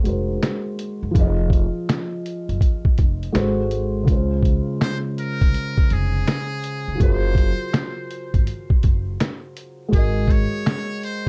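A swung 82 BPM groove in 4/4 comes from a compressed, up-front sampler-style drum kit, with a thumpy kick, fat snare, hi-hat and finger snaps, alongside a woody, pizzicato gut-string upright bass in this nostalgic, cosy lo-fi hip hop fragment in Db major. A felt-muted upright piano, soft and intimate with audible action noise and a cassette-tape tint, carries the harmony through chords such as Dbmaj7 and Gbmaj9#11. At 4.8 seconds a buzzy, distant trumpet with a metal mute takes a jazz-style solo with light vibrato and analog delay, all set in a dark, dry production.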